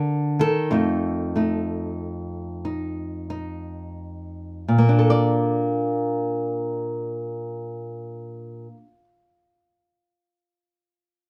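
Close, detailed miking puts a small, dark nylon-string guitar up front in a wet club reverb, in this brief, sophisticated solo jazz fragment cut from a longer piece. The fingerpicked acoustic guitar plays alone throughout with a lilting swing, slowing down over the opening 4.7 seconds as it moves from a rootless Cm9 to F7. It then settles onto a Bbmaj7 at 4.7 seconds for a warm close.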